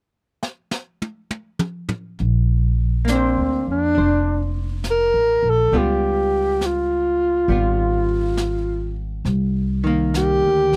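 A breathy alto saxophone carries the melody of this tender, intimate swung jazz ballad from 3.1 seconds, its soft-attack subtone and vibrato sitting up front. It follows a brushed drum fill that opens the cut and a woody pizzicato upright bass entering at 2.2 seconds, while a dark, clean hollow-body archtop guitar accompanies over Bbadd9, Db7#11 and Cm9 chords, all in a dry, close 1970s-style studio sound with light reverb.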